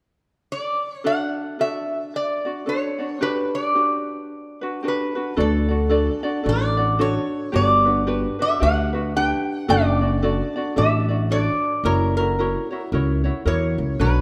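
A lightly swung 4/4 lilt at 111 BPM carries this languid, sunny Hawaiian excerpt in D major, where a metallic, nasal resonator slide guitar played with fingerpicks takes the melody from 0.5 s, a light fingerpicked ukulele joins at 1.0 s over D and Gmaj7 chords, and a woody pizzicato upright bass with steel strings enters at 5.4 s as the harmony cycles back through D and Gmaj7 to D/F# and F#7, all three up front in a moderate recital-hall reverb.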